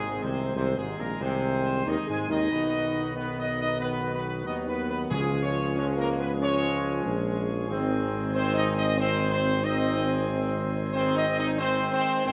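A mellow, softly vibrato trumpet section carries the melody up front in this triumphant, solemn classical fragment at 92 BPM, over sustained chords from bright trombones, a full principal-chorus pipe organ with baroque voicing and chiff, and a background French horn section, while a warm, smooth tuba anchors the bass, timpani sound briefly from 5.1 to 6.0 seconds, and a concert hall reverb surrounds the brass and organ as the harmony moves from G# through B and C# back to G#.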